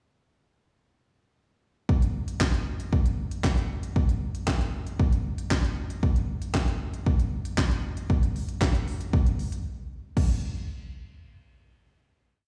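A house drum kit comes in at 1.9 seconds with a four-on-the-floor dance-pop beat in straight 4/4 at 116 BPM, carrying this short, complete pop piece through its pre-chorus. The electronic, layered kit is up front, with a punchy kick, a cracking snare doubled by handclaps, crisp hi-hats and a crash cymbal, all given a tape-warm, produced sheen. The mood is energetic yet bittersweet. A break arrives at 9.7 seconds, a final-hit section begins at 10.2 seconds, the drums stop at 10.3 seconds, and the piece closes at 12.2 seconds. The sound has the feel of a live gig heard through the venue's PA, mixing recital-hall reverb with studio ambience under a light overall reverb.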